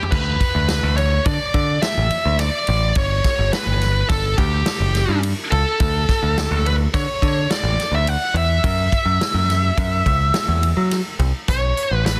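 A dark, distorted bluesy lead guitar with delay carries the melody through this brooding, tense progressive instrumental in 5/4 at 106 BPM, backed by a direct, punchy picked electric bass entering at 0.1 seconds and a natural, big-room swinging big-band drum kit of crash, ride, hi-hat, medium-tuned snare, toms and kick, all three parts up front in a dense, heavily limited modern mix with studio reverb, as the harmony moves through D5, a chordless stretch, D5 again, F#5 and B5 in this brief cut from a longer piece.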